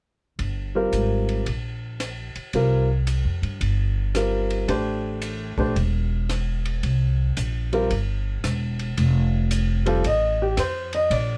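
A swing at 112 BPM in 4/4, with a gentle eighth-note lilt, drives this playful jazz piano trio excerpt in F major, tuned to A4 = 437 Hz. The pizzicato upright bass enters at 0.4 seconds, sitting up front with a woody, steel-string tone that spans the low register. A compact cocktail drum kit joins at the same moment, quieter in the mix, offering dry hi-hat, rim clicks, a punchy kick and dark ride cymbal. At 0.8 seconds the upright piano takes the melody, its natural, warm voice placed close to the listener. The harmony moves from Gm7 through C7sus4, Am7 and C7(no3) before resolving to F at 9.0 seconds, where a new section begins. Light reverb and a dark, warm production give the short clip an intimate, swinging character.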